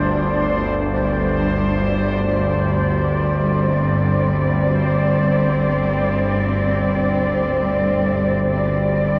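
A veiled, con sordino cello section holds dark sustained chords over a nasal, string-like low drone swept by a filter, while a resonant, bubbling sawtooth texture steps randomly through chorus, all three sounding together for the full 9.2 seconds of this ominous dark ambient fragment in free time, set in a cavernous cathedral reverb and the warbling pitch drift of worn cassette tape.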